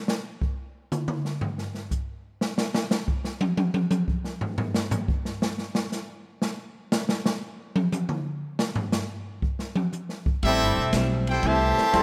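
A dark, smooth acoustic drum kit opens this swinging, dramatic big band excerpt alone, taking a solo for the first 10.4 seconds at 120 BPM in 4/4 with a strong swing feel, its boomy kick, medium-tuned snare, toms, hi-hat and dusky ride cymbal sounding up front in a small room. At 10.4 seconds the full band arrives on an A minor seventh chord in A minor, led by a brilliant trumpet section carrying the melody with light vibrato. Beneath it, a warm trombone section with vibrato plays a second line from a distant, roomy position in the background, while a clean, picked hollow-body electric guitar adds dark accompaniment. A woody, thumpy upright bass on gut strings plucks the low end prominently. In the final moments a second, mellow trombone section enters at 11.9 seconds with vintage-toned sustained chords, and a moderate echo chamber reverb gives the whole passage a sense of space before it cuts off.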